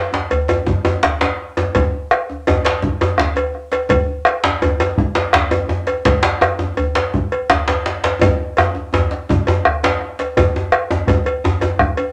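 In a moderately reverberant studio sound, this earthy, festive excerpt of West African traditional drumming moves at 111 BPM in a straight 12/8, with a dark, up-front bombo, two djembes (one compressed and saturated with metal rattles and hard hands, the other medium-tuned with rattles of its own in a live room), and a metallic, close and dry cowbell, while a drum fill from 8.2 to 10.4 seconds leads into a new section.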